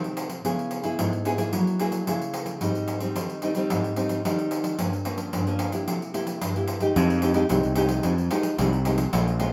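A samba and choro excerpt in F minor at 110 BPM, this short cut from a longer piece feels both nostalgic and lively. A fingerpicked nylon-string guitar carries the accompaniment throughout, its classical tone sitting up front as it moves through chords such as Dbm7, Gb9, Abmaj7, Gm7b5 and C7. A jingly pandeiro plays alongside from the start, sounding distant, as if caught in a large room. At 7.0 seconds a growling fingered electric bass arrives on an Fm9 chord, bright and overdriven with a direct, amped edge that adds grit to the low end. A moderate studio reverb gives the recording a sense of space.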